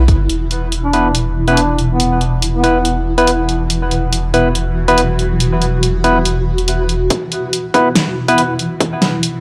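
A half-time, lightly swung 141 BPM pulse drives this meditative, heavy deep dubstep excerpt, where a tape-warm house kit with a fat snare and hi-hat runs throughout, a round, soft sub bass holds E1 to G1 until 7.1 s, a blurred granular cloud pad with phaser sustains an E5 chord under a filter sweep, a distant, mellow duduk with vibrato and scooped notes sings briefly through dub echo, a barky tine electric piano stabs with low-pass filtering and echo, and a tight kick returns at 7.1 s for a filtered build-up, all on a gritty cassette recording.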